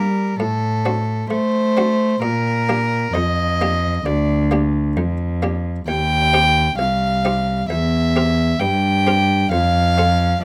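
A warm, nasal gut-strung violin carries a radiant, flowing melody up front in this short baroque-style sonata excerpt, joined throughout by a dark, smooth-topped cello bass and a muted, lute-like buff-stop harpsichord, all captured with close, detailed microphones in a dry room as the harmony moves from D7/A through Gm, Cm/Eb and C7/E to settle on F.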